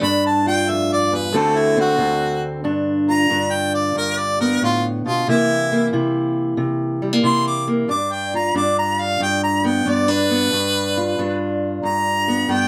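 A clear harmonica and a fingerpicked steel-string acoustic guitar start together, setting up a gritty, soulful acoustic country blues at 92 BPM in 4/4 with a swung eighth-note feel. The harmonica carries the melody as a solo throughout, its tone distant and roomy yet up front, marked by light vibrato, scooped notes and a jazz-inflected style. Beneath it, the guitar supplies a boxy, parlour-sized accompaniment, fingerpicked and sitting up front in the mix. The harmony moves through G5, D7, G7, C7 and back to G7, with a short opening phrase giving way to a longer section from 2.7 seconds. A moderate studio reverb gives the pair a sense of space in this short excerpt cut from a longer piece.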